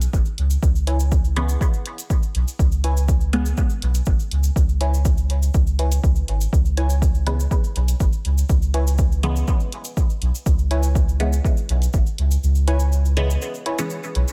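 A straight 4/4 groove is driven by a punchy, up-front electronic kick, layered dark hi-hats and a grainy acoustic cabasa, with the kick dropping away at 12.0 s so the closing moments carry on over the hats, cabasa, bass and stabs. This dub techno excerpt feels cavernous and deep. Beneath it, a round, soft sub bass sits forward in the mix and pumps from sidechain compression. Two muted, detuned, filtered dub chord stabs outline a C#m7 harmony. The higher one plays a riff through chorus and dub echo, while the lower one adds stabs with phaser and dub echo, entering at 1.4 s and returning later in the passage. A digital ambience gives the piece its spacious sense of room.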